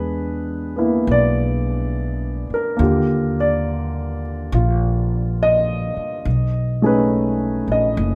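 A warm baby grand piano and a woody, growly pizzicato upright bass sit up front from the first moment of this intimate, melancholic jazz ballad excerpt, moving at a slow swung 69 BPM in 4/4 through E7#11, Ebmaj9 and B13 harmonies, with the piano's natural tone and the bass's low register set in a moderate large-studio reverb.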